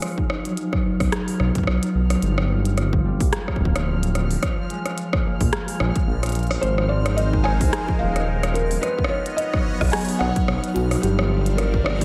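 An echo-heavy mix with light reverb frames this playful, intricate IDM excerpt at 109 BPM in 4/4, its sixteenths carrying a gentle swing. From the start, a mellow, ringing concert harp plays arpeggios through a dub echo, joined by a glitchy drum kit of clicky hi-hats and rim clicks that sounds tape-warm and re-recorded in a large room. A bubbling stepped-filter texture, resonant and chorused, sits in the background, while a heavy electronic kick arrives up front at 0.2 seconds. At 1.0 seconds a dark, detuned saw bass rumbles in, deep and saturated, its beating tone pushed forward in the mix. The harmony moves from B to Gm7 and Bb5, and at 6.6 seconds, as it reaches Ab6, a felt-muted upright piano takes the melody, soft and intimate with audible action noise and tape echo. A swirling, bright analog pad adds sustained chords through phaser and chorus as the progression returns to B and Gm7.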